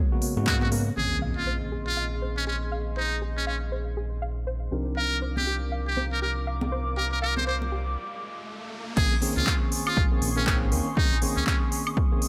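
A buzzy, close-miked muted trumpet with vibrato carries a jazz-style solo up front through this hypnotic deep house excerpt, its lines trailed by analog delay over a moody, detuned analog pad and worn, slightly out-of-tune electric piano stabs with overdrive and tape echo, both pumping against the beat. A round, deep analog bass with tube saturation and a soft, mellow pluck arpeggio in the background fill out the Abm11, Bbm11 and Cm11 harmony, while bright, soft-handed congas, an impact and a riser sit further back. After a brief break from 8.0 seconds, the punchy overdriven kick and the drum kit, with smooth hats, handclaps, woodblock and crash, return for the drop at 9.0 seconds, all in a dry, gritty hardware sound with transformer saturation.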